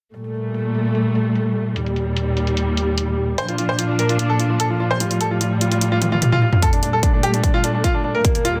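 Heavy wobble dubstep in G minor at 148 BPM with a half-time feel, aggressive and weighty, cut from a longer piece. A dark, woody string section sustains lush bowed chords with vibrato and sidechain pumping, moving from Gmadd9 through Eb, Bb and Fadd9, while a dubstep kit of hi-hat and toms runs under a filter sweep with a fill at 6.0 seconds. A bright, brilliant baby grand piano carries the melody with dub echo from 3.4 seconds, and a punchy electronic kick arrives at 6.6 seconds as the build-up begins, all in a dense, heavily limited mix with light digital ambience.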